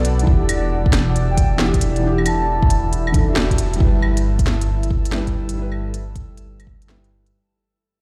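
A soft, felt-muted upright piano with audible action noise, dulled by a low-pass filter and trailed by tape echo, opens this wistful, melancholic future garage cut at 136 BPM. It arrives together with a deep, moody ambient pad, a rumbling detuned saw bass, an organic electronic kit of claves, woody snare and smooth hats, and a glassy, drifting harmonics texture in the background, with the piano, pad and bass all pumping from the sidechain. A tape-warm electronic kick lands at 0.3 s under the swung 16ths, a pure wooden flute with vibrato and dub echo sings a brief line from 1.3 s, and after a band accent at 3.4 s the harmony moves from Em7 to G6 as the piece fades out, heard as if played on a big sound system in a bare room.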